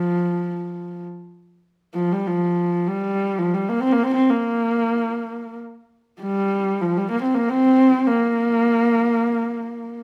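A dark, nasal horsehead fiddle plays alone in free time through this 10-second fragment of a longer Mongolian folk piece, its husky bowed horsehair strings sitting up front between F3 and C4 with expressive vibrato and portamento that lend a galloping, proud feel, set in a live, wet reverb of a large studio.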